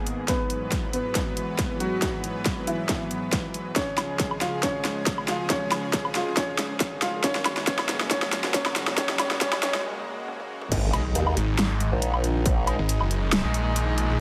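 A formant-sweep wobble bass storms in at 10.7 s, joined at 10.9 s by a snarling, growling saw bass, detuned and distorted, both saturated and up front, to drive the drop of this menacing, aggressive heavy wobble dubstep cut from a longer piece. It moves at 138 BPM in a half-time 4/4 with a light swing, in G# minor and tuned slightly sharp. The opening build-up is carried by a warm grand piano melody with delay over a lush, detuned supersaw pad that pumps under sidechain, moving through Eadd9/G#, C# and F#add9 chords while a filter sweep runs. A layered dubstep kit with a huge snare and bright hats plays fills alongside a distorted, tape-toned electronic kick, and a very quiet riser and impact sits beneath. The piano drops out at 9.8 s for a short break, and the drop lands on a G#5 power chord where a bright fuzz guitar adds picked, compressed stabs with delay.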